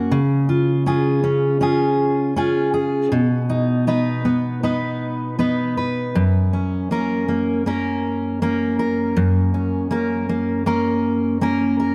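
A straight 4/4 pulse at 80 BPM sets an unhurried pace for this heartfelt, emotional pop fragment in F# major, tuned slightly sharp with A4 at 441 Hz. A single fingerpicked steel-string acoustic guitar carries the entire 11.9 seconds alone, its jumbo body giving a full-bodied tone that ranges from F#2 up to B4. The harmony moves from C# to B at 3.1 seconds and settles on F# at 6.2 seconds. The guitar sits up front, where finger squeaks are audible. A lush hall reverb lends a spacious halo, and a faint mains hum lingers beneath this short section cut from a longer piece.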